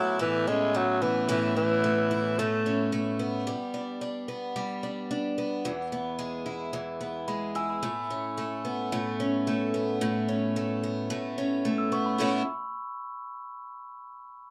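A straight 4/4 pulse at 110 BPM carries this heartfelt, easy-going acoustic pop excerpt in A major, which moves from Aadd9 through G and E before settling back on Aadd9 and closing on A. A raspy tenor saxophone opens with the melody, gritty and carrying a light vibrato, sitting up front yet sounding distant through plate reverb, and it drops out by 2.9 s. A picked twelve-string acoustic guitar supplies the accompaniment from the start until 12.4 s, its fresh strings giving a shimmering, octave-doubled ring with a boxy archtop body and audible finger squeak. A glockenspiel struck with rubber mallets adds a soft, bell-like second line in two brief touches, first at 7.3 s and again near 11.8 s, mellow and sitting mid-forward in the mix. A small room gives the whole a modest ambience, and the production leans dark.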